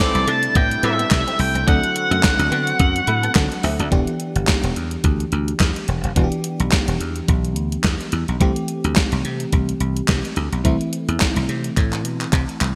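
A dark, up-front octave-fuzz lead guitar with distortion and delay opens this late-night, danceable early-eighties boogie funk excerpt in E minor at 107 BPM, sounding over a crisp, thumpy 8-bit drum machine with gated reverb and handclaps, a dry, punchy thumbed slap bass, a glassy FM electric piano with chorus that plays a fill from 2.8 s, brief background horns and a smooth analog pad, and a very quiet clean guitar riff, all set in a lush hall and bright digital production before a drum fill at 11.8 s.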